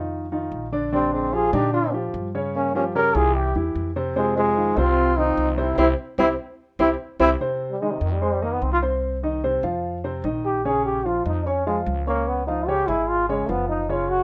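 A clear, up-front trombone with vibrato carries the melody from 0.9 seconds in this fiery, sophisticated jazz piece in F minor at 148 BPM, cut from a longer performance, with a breathy, whispered tenor saxophone weaving a soft-attack second line full of scooped notes. A warm, natural baby grand piano with short sustain comps underneath while an upright bass plucks woody, thumpy lines on gut strings. The band hits an accent at 5.8 seconds before the saxophone falls away and the trombone launches into its solo at 7.4 seconds, all in a light reverb.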